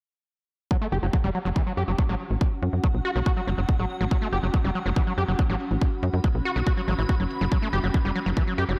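A light reverb and a tape-saturated, small-room character frame this short psychedelic trance cut, which sits on F# phrygian at 141 BPM in a straight, driving 4/4 with an alien mood. A heavy, layered electronic kick drum stands up front from 0.7 seconds, joined by very quiet electronic hi-hats. A tight, punchy sequencer bass built from sawtooth and square waves with ring modulation enters at 0.9 seconds, its filtered plucks snapping in fast and decaying. Over it, a screaming acid riff, squelchy, resonant and aggressive, carries distortion, chorus, sidechain pumping and a diffuse ambient delay, with a filter sweep running through it over an F#5 chord. From 1.7 seconds a granular cloud pad of detuned unison sines swells slowly into a bright, blurred, evolving haze, breathing with its own reverb, subtle chorus and sidechain pumping.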